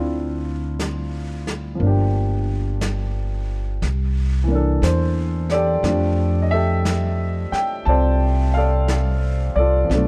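Late-night and romantic, this brief jazz ballad passage drifts at 59 BPM in a swung 4/4 in F major, with an up-front baby grand piano ringing open with long sustain through a Dm9, Gm7, C13 and F69 progression over a woody, growly pizzicato upright bass, while a softly mixed brush kit of snare and hi-hat joins at 0.8 seconds, all captured in a dry, dark and warm production.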